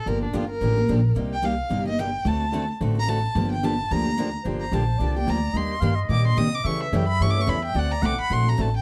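Jazz manouche at a swinging, fiery 218 BPM in G minor, this short cut features an expressive bowed violin soloing up front with vibrato and portamento over a bright, full-bodied steel-string guitar, a dark, boxy swing guitar with audible finger squeak, and a thumpy, woody pizzicato upright bass on gut strings, while a raspy, growling clarinet enters at 4.4 s with a gritty second line, all set in light reverb within a dark, warm production.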